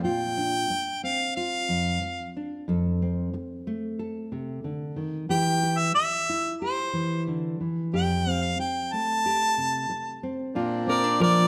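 A clear harmonica opens this pastoral acoustic folk piece, singing a smooth-topped, classically styled melody with light vibrato up front, while a full-bodied nylon-string guitar fingerpicks a deep classical accompaniment, also up front beside it. The unhurried, straight 4/4 feel moves through gentle added-ninth harmonies, from Bbadd9 through F and C/E to Fadd9 before returning home to Bbadd9. Near the end, an accordion enters at 10.5 seconds with reedy, boxy sustained chords in dry tuning, and a lap resonator guitar follows at 10.9 seconds, adding a metallic, nasal second line played with fingerpicks and slide. Close, detailed microphones capture the intimate playing within a moderate recital hall reverb, giving the sound a warm, natural space. The music is cut from a longer piece, stopping just as the fuller band arrives.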